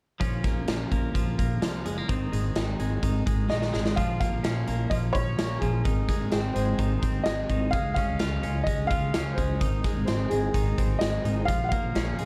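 A dark production sits in a moderate small room, giving this short cut from a longer piece of jangly indie pop a wistful, restless mood. At 128 BPM in a straight 4/4 and in B-flat minor, tuned to A4 = 438 Hz, it opens at 0.2 seconds with a bright, twangy twelve-string electric guitar picking clean, compressed arpeggios up front, bathed in spring reverb. Beneath it, a woody upright bass plays pizzicato on steel strings, and a big acoustic rock kit with a punchy kick, a medium-tuned snare and hi-hat sounds natural and forward. A drum fill at 3.5 seconds brings in an intimate upright piano carrying the melody, slightly detuned and with audible action noise. From 4.0 seconds the harmony moves through B-flat minor, A-flat and D-flat before settling back on B-flat minor.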